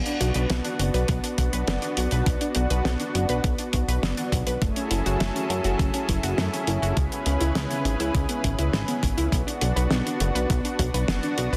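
Moody and nocturnal, this synthwave excerpt in B dorian moves at 102 BPM in a straight 4/4, with a glossy, up-front chorused synth bass under a lush, airy pad that pumps to the sidechain, detuned unison pluck arpeggios trailing digital delay, a dry, dark 70s kit of hi-hat and fat snare, and an overdriven, thumpy electronic kick entering at 1.1 seconds, all set in a concert hall reverb over a Bm, F#m7, C#m7 progression and a dense, heavily limited master.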